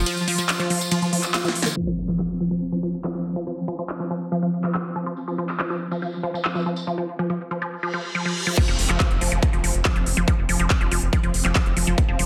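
A straight 4/4 pulse at 141 BPM drives this intense, psychedelic trance excerpt, with a punchy, up-front kick entering at 8.6 seconds beneath a big-room dance kit of crisp hats, handclaps, snare, ride and crash, a distant jingly tambourine, and a round, deep analog bass on F1 that returns at 8.7 seconds. A lush, detuned unison pluck riff with a moving notch, dub echo and sidechain pumping rides over a mellow, pulsing gated texture of sustained chords treated with chorus and built-in reverb. Through the middle stretch, filter sweeps move across the synths, with a background impact at 1.8 seconds and a reverse cymbal leading back into the drop, all in a dense, heavily limited master with a moderate digital room sound.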